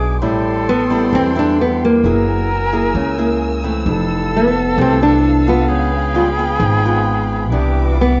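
This breezy, relaxed bossa nova excerpt opens with a woody, thumpy pizzicato upright bass up front, a fingerpicked classical nylon-string guitar accompaniment with fresh strings and audible finger squeak, a pure, soft-attacked concert flute with vibrato on a second line, and a warm studio string section sustaining smooth-topped bowed chords with vibrato and expressive portamento, before a small-sounding fingerpicked nylon-string guitar takes the melody with slapback echo from 0.7 seconds, the whole mix sitting in light reverb and small room ambience.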